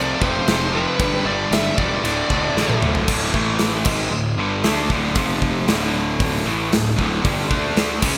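Punchy, up-front gated 80s drums with bright cymbals and a gated-reverb snap drive this powerful, energetic hard rock excerpt at 115 BPM, where a high-gain distorted guitar and an overdriven semi-hollow guitar play a background riff over growly fuzz bass through power chords on D, F, G and A, while a bluesy lead guitar with digital delay sings a short melody until 2.8 seconds, overlapping a drum fill at 2.6 to 3.1 seconds that ushers in the next section, all in a bright, 1980s-style digital production with light small-room ambience.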